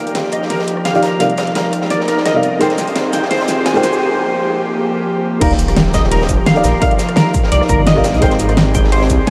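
Soaked in a dreamy reverb haze, this rolling, lush liquid drum and bass excerpt sets an airy, breathy pad, a menacing detuned saw bass, bright clean arpeggios from a semi-hollow electric guitar and a muted, intimate felt-muted upright piano over a layered pop drum kit with a fat snare and metallic hats and a gritty breakbeat kit in the background, while a very quiet riser and sub drop build toward the drop at 5.4 seconds, where a punchy electronic kick drum enters.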